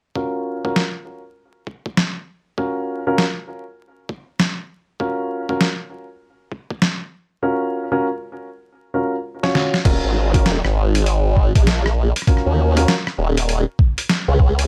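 Dark, mellow baby grand piano stabs on a Dbadd11 chord open this funky, swaggering glitch hop cut at 99 BPM, pumping against a thumpy, pitched-down electronic kick while a filter sweep runs through the piano and a boom bap sampler-style kit with a medium-tuned snare, hi-hat, rim click and crash joins at 0.8 s, all in a gritty, tape-warm swing with little reverb and a layer of vinyl crackle. After a drum fill, a detuned, wobbling formant-sweep bass with tube saturation and chorus arrives at 9.9 s on Ebm9, and the piano stops at 12.9 s, leaving the up-front bass and drums to carry the groove.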